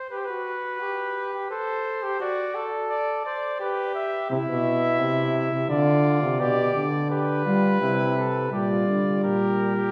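In a straight triple metre, this lively, elegant classical canzona for brass ensemble, cut from a longer piece, sets an up-front, warm trumpet melody over a clear, close-miked flugelhorn second line, with a smooth-topped euphonium accompaniment joining at 4.3 seconds and a mellow, distant bass trombone with light vibrato arriving at 8.5 seconds as a new section begins, the ensemble heard in a wet concert-hall reverb.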